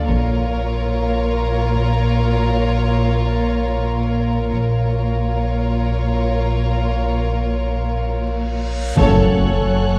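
Uneasy and mysterious, this cinematic suspense cue, cut from a longer piece, sets distant, expressive violin sections carrying a soft melody and second line over an ethereal glass harmonica, woody cello and rich double bass sections, a round sub bass drone and very quiet vintage taiko, before a bright reverse cymbal at 8.7 seconds leads into a huge impact at 9.0 seconds, where dark viola and French horn sections, mellow trombones, a lush high violin texture and the returning taiko arrive on an F#madd9 chord, set in a scoring stage reverb with vinyl crackle.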